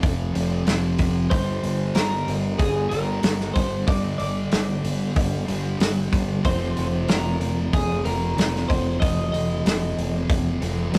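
A rough rehearsal-room recording with tube saturation and a moderate small-room reverb gives this short cut from a longer piece a hazy, melancholic air, placing it somewhere between rock, shoegaze and dream pop in a straight 4/4. Up front, a double-tracked fuzz guitar plays a distorted, picked riff in a low register, while a growling picked electric bass, overdriven and mixing direct and amped tone, holds down the bottom. The loose indie drum kit is acoustic and mid-forward, with a tight kick, a medium-tuned snare and hi-hat sitting close to the listener. At 1.3 seconds a clean, compressed twelve-string electric guitar enters with a warm picked melody in a higher register, carrying on until 10.2 seconds. The harmony moves from F5 to G minor and returns to F5 at 6.5 seconds.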